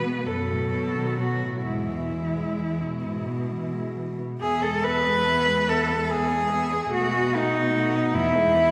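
Warm and serene, this short cut from a longer classical piece for four bowed cellos moves in a rubato 6/8 at roughly 42-50 BPM in E major, with its two statements of the same section settling from B7 harmony onto E. The warm, distant top cello sings the melody with vibrato and expressive portamento, while a clear, smooth and even cello carries the second line up front as the most prominent voice. Beneath them, a rich, soft-attacked cello adds accompaniment with gliding portamento, and the close, intimate bass cello plays with light vibrato and an airy sul tasto bow, all bathed in a 2.7-second church reverb.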